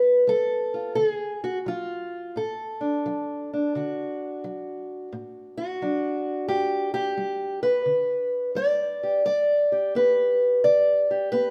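A lone fingerpicked acoustic archtop guitar opens on a G7 chord and settles onto D at 1.0 seconds, setting a laid-back, soulful country blues mood. The tempo is an easy 87 BPM in 4/4, with a loping swing on the eighth notes and the music centered in D major. The guitar sits up front, its tone dark and boxy, and finger squeaks on the strings add an intimate, close-up detail as it ranges from G2 up to D5. A reverberant stone room surrounds the playing with a lingering tail, giving the sense of musicians performing live in one space. The harmony moves to G at 6.5 seconds before this short cut from a longer piece ends at 11.5 seconds.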